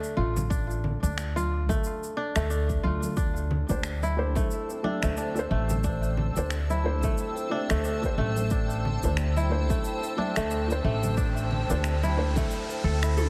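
Organic downtempo at 90 BPM with a meditative, earthy mood and a swung 16th feel: a crisp, fingerpicked kora spins delayed arpeggios over a woody, thumpy pizzicato upright bass that pumps up front, while an overdriven organic electronic kit of finger snaps, shaker and toms, deep layered electronic kicks and ringing congas and bongos in the background carry the groove from Dm to Am7, a muted felt piano with audible action noise enters at 3.7 seconds, a blurred, detuned granular cloud pad drifts in at 4.3 seconds, and an electronic riser enters at 10.6 seconds, all within a heavily compressed, radio-like small room.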